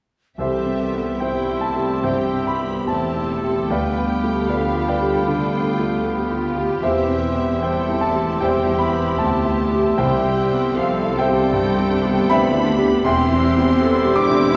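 A clear, up-front grand piano leads this lush, lyrical classical excerpt in C major at a rubato 70-82 BPM, joined from the start by rich bowed violin, viola and double bass sections, a clear bowed cello section, an airy silver flute, a warm oboe, a very quiet clarinet and mellow French horn chords, all heard from further back in a wet scoring-stage reverb, with a soft, round timpani note sounding between 10.0 and 11.1 seconds.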